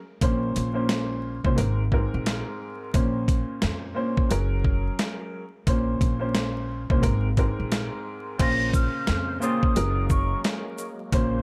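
A dark, gritty boom-bap hip-hop excerpt at 88 BPM in Bb minor opens with an up-front upright piano, woody and long-sustaining, laying down minor and major added-ninth chords over a thumpy, woody pizzicato upright bass. A dusty sampler-style drum kit, compressed and re-recorded in a large room, drives the swung groove with a thumpy kick, medium-tuned snare, hi-hat, shaker and crash, sitting prominently in the mix under a bed of vinyl crackle and small-room ambience. At 8.4 seconds the arrangement opens up: a breathy, hollow jazz flute with vibrato and tape echo carries a high melody until 10.4 seconds. Alongside it, a mellow vintage horn section adds soft-attack stabs in the background with tape echo, while a reedy, lightly overdriven tonewheel organ holds sustained chords through a fast rotary speaker with key click. The filtered piano, flute, horns and organ give the late passage a smoky, lo-fi sheen against the gritty drums.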